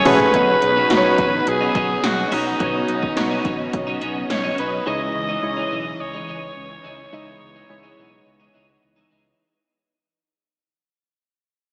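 1980s-style pop in C# minor at 106 BPM, this moody, dramatic fragment of a longer piece opens on a brief drum fill and fades out from 0.3 seconds, moving from Badd9 to C#madd9 at 4.9 seconds. A raspy, forceful alto saxophone carries the melody up front with light vibrato, over glassy digital keys with chorus, a twangy twelve-string electric guitar riff with analog chorus, mellow string-machine cellos with phaser and ensemble chorus in the background, and a round, dark fretless bass. Electronic pad drums with a punchy kick, metallic hats and gated reverb on snare and toms play until 4.7 seconds, and the whole mix sits in a lush hall reverb with a big arena sound.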